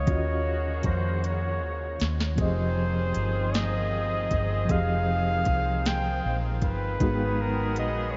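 A flugelhorn with vibrato and scooped notes opens over a worn, slightly out-of-tune reed electric piano with fast tremolo and a round, foam-muted fingered bass, setting a sultry, late-night slow R&B groove in 6/8 at 52 BPM in F phrygian. An overdriven electronic drum kit with a soft kick, sharp snare and crisp hats plays a fill from 1.2 to 2.4 seconds, while a distant horn section adds delayed stabs and a breathing pedal harmonium enters in the background at 2.4 seconds. The chords move from Ebm9 to Fm9 to Abm9, and the whole excerpt sits in a dreamy, reverb-soaked mix with a dark top end.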